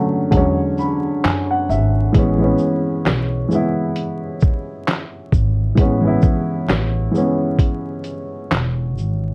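Mellow and dreamy, this short excerpt from a longer lo-fi hip hop piece sits at a relaxed 66 BPM in 4/4 with a swung sixteenth-note feel, in A major. A dark upright piano carries the accompaniment from the very start, its smooth, vintage tone sitting up front and softened by cassette tape coloring and a low-pass filter, with a fill running from 0.3 to 2.1 seconds. At 0.3 seconds a pizzicato upright bass with a woody, acoustic character joins alongside a lo-fi sampler-style drum kit of kick, snare, hi-hat, handclaps and shaker, which sounds compressed, pitched down and muffled, with a thumpy kick, a medium-tuned snare and 12-bit sampler grit. The harmony moves from E13 to Amaj7 at 2.1 seconds. Light reverb, worn and warbling old tape with drifting pitch, and vinyl crackle give the whole recording a hazy, nostalgic sheen.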